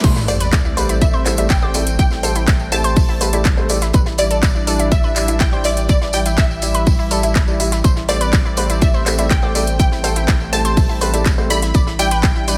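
A punchy electronic kick drum sits up front in this driving, bittersweet progressive house excerpt, running at 123 BPM in 4/4 with a straight feel in A minor, its tape-warm thump re-recorded in a small room alongside a house drum kit of metallic hats, crash cymbal and handclaps. A round, dark analog bass holds A1 with sidechain pumping, while a nasal, bright analog pluck spins arpeggios through chorus, cassette tape color and digital delay, and a lush, detuned unison pad sustains chords in the background with phaser and chorus. From 0.3 seconds a full-bodied unison pluck carries the melody between D5 and B5, joined by a smooth soft supersaw as a second line, and a felt-muted upright piano adds soft, intimate stabs, all three trailed by digital delay. A riser and sub drop marks the opening impact until 2.0 seconds, a jingly, vintage tambourine shimmers underneath, and a dry, very quiet acoustic reggae kit contributes a high-tuned snare and hi-hat. 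The harmony rests on Am7 before shifting to Em7/A at 11.7 seconds, all framed by light reverb, digital ambience and a high-pass filter.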